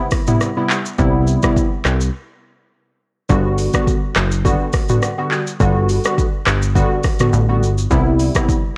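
Afrobeats at 104 BPM in G major, breezy and sunny, with a lightly swung 16th feel: glassy, detuned keys with chorus float over Cmaj7 and Gmaj7, an overdriven afro-pop kit of deep kick, metallic hats, handclaps, rim clicks, shaker and toms sits up front, and a punchy, funky analog bass plucks along from 1.0 s, all through a dry, worn cassette sound with warbly pitch drift and a break at 2.1 s in this short cut from a longer piece.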